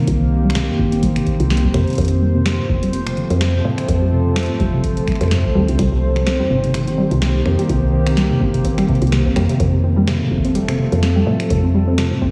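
A warbly, nostalgic tape-like pad holds mellow chords up front while a dusty, wave-folded pluck spins arpeggios under a filter sweep with tape echo, opening this intricate, glitchy IDM excerpt in C dorian at 126 BPM with a 56% swing on the sixteenths, where a round, woody FM bass, a booming analog drum machine with crisp snare, metallic hats and finger snaps trailing a diffuse delay, and a deep electronic kick in the background all join at 0.1 seconds over Cm7 and F, the whole dreamy mix soaked in lush hall reverb.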